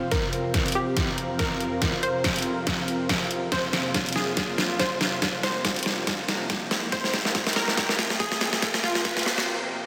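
A detuned unison pluck melody with cassette-tape color and dub echo opens this heavy, menacing wobble dubstep build-up at 141 BPM in half-time, over a filter-swept supersaw pad and a breathy, warbling, chorused pad, both pumping under sidechain, while a punchy layered kick and an up-front drum kit with deep snare and hi-hat play a fill in a lush hall, a very quiet riser enters at 6.1 s, and a brief break arrives at 9.5 s in a dense, heavily limited mix.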